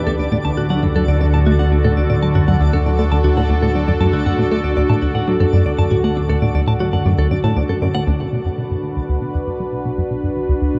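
Drenched in a huge reverb with an 8.9-second tail, this dark, warm excerpt of ambient, sequencer-driven space music moves at 118 BPM in a straight 4/4, mysterious and expansive, over D and then Bm. A tight, detuned sawtooth synth riff with a filter pluck and chorus drives up front beside a swirling, phased analog pad, while a clean, twangy, direct-recorded electric guitar plays compressed, picked arpeggios through analog delay and a twinkling granular FM texture glints in the background. At 8.2 seconds the guitar and sparkle stop and a very quiet, round, ring-modulated bass enters under the pad and riff, with a filter sweep running through the synth across both sections.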